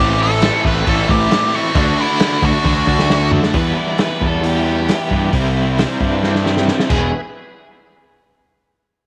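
A nasal lead guitar with a parked wah, overdrive and slapback echo carries the melody until 3.3 seconds in this driving, brooding classic rock passage at 134 BPM in E minor, over an up-front fuzz bass that is round and punchy, a muffled, lo-fi vintage drum kit that enters at 0.4 seconds and adds fills, and a background bed of overdriven riffs from a bright cranked stack guitar, a double-tracked distorted electric guitar and a hollow-bodied semi-hollow guitar with tremolo, while a very quiet, shimmering fingerpicked twelve-string acoustic with finger squeak, a faint shouting tonewheel organ on a slow rotary speaker, and an overdriven electric guitar playing a second line from 3.5 seconds fill out the sound under light reverb.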